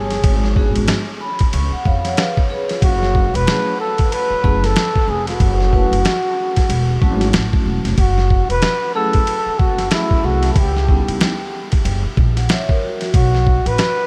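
Jazz-hop at 93 BPM in F# minor, this nocturnal, smoky excerpt from a longer piece swings as a gritty, pitched-down boom bap kit with a thumpy kick sits up front beside a woody pizzicato upright bass, while a soft-mallet vibraphone rings with slow motor vibrato and adds a fill from 0.9 to 2.8 seconds beneath a breathy, whispered flugelhorn melody with scooped notes and analog delay, set in light studio reverb.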